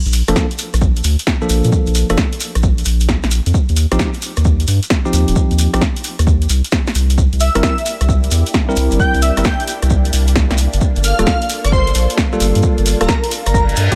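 Set in a digital ambience, this sunny, bouncy two-step UK garage cut from a longer piece rides a swung 132 BPM groove in Bb major, built on a thick, saturated sub bass up front and a punchy, overdriven analog drum machine with hi-hat, rim click and snare, plus a dry electronic kick and a grainy shekere in the background. Bell-like tine electric piano stabs with delay sit forward over a Bbmaj7, Eb69, C7 and Gm9 progression. At 7.4 seconds a silky string machine with phaser, ensemble chorus and sidechain pumping arrives alongside an airy, dreamy detuned lead with chorus and delay, before a reverse cymbal sweeps in at 13.7 seconds.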